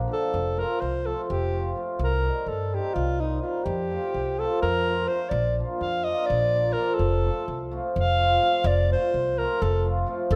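This is a festive, virtuosic Balkan wedding-band tune in 7/8, moving briskly at 252 BPM counted in eighths, with a straight feel in F mixolydian. A dark alto saxophone takes the solo melody from the first moment, its soft attack, smooth top and light vibrato giving a classical polish as it sits up front between Eb4 and F5. Underneath, a hammered cimbalom rings and shimmers in the middle register, while a woody, pizzicato upright bass on steel strings stays prominent down low. The harmony circles from F to Cm, back to F, then to Bb and home to F. Just as the passage is cut off, a mellow, distant clarinet touches a single A4 at 10.3 seconds. A moderate recital-hall reverb lends the whole band a roomy glow.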